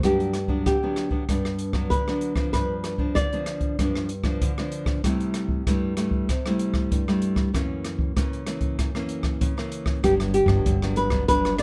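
Samba and choro in G major at 96 BPM, joyful and sunny, in which a full-bodied, fingerpicked nylon-string guitar accompanies with audible finger squeak over an airy, polished jazz kit of hi-hat, rim click and boomy kick, while a dark, fingerpicked flamenco guitar carries the melody up front until 4.7 seconds and returns at 10.0 seconds as a woody pizzicato upright bass joins, all set in light reverb and a warm production cut from a longer piece.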